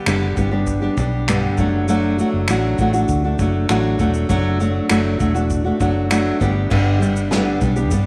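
Acoustic pop at 99 BPM in a straight 4/4, tender and reflective, taken from a longer piece. An up-front, fingerpicked nylon-string guitar with fresh strings carries the accompaniment over a G to D/F# and back to G progression, supported by a round, punchy, foam-muted vintage electric bass and a distant, roomy unplugged kit played with bundle sticks, with finger snaps, shaker, tight kick, medium-tuned snare and dark crash cymbal. A wet echo-chamber reverb with a long tail surrounds the recording, and the music moves into a new section at 6.7 seconds before the clip ends at 8.1 seconds.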